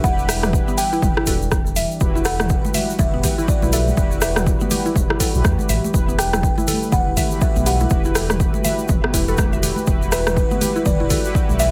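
Set in a digital ambience, this hypnotic, spiritual afro house excerpt at 122 BPM in E minor holds on a single Emadd9 chord, with a buzzing, woody kalimba carrying the melody over a dark, detuned analog pad and brassy synth stabs treated with chorus, tape colour, delay and sidechain pumping. A punchy, overdriven electronic kick sits up front beside a round, deep analog bass that also pumps, while a grainy egg shaker ticks along from the start. At 0.3 s a mallet-like FM pluck adds delayed arpeggios and a deep house kit brings metallic hats, rim clicks and toms, and close, dry congas played with hard hands join in the background at 2.6 s.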